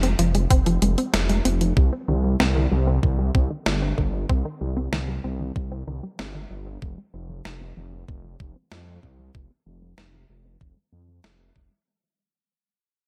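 A thick, detuned saw bass with chorus and sidechain pumping anchors this nocturnal, driving synthwave excerpt in F minor at 95 BPM, alongside a lush, punchy unison pluck playing arpeggios with delay and a clean 12-bit drum machine's hi-hat and medium-tuned snare with gated reverb, with a thumpy, up-front electronic kick entering at 0.5 seconds, over chords moving from Fm to Cm and back, all fading out across its length.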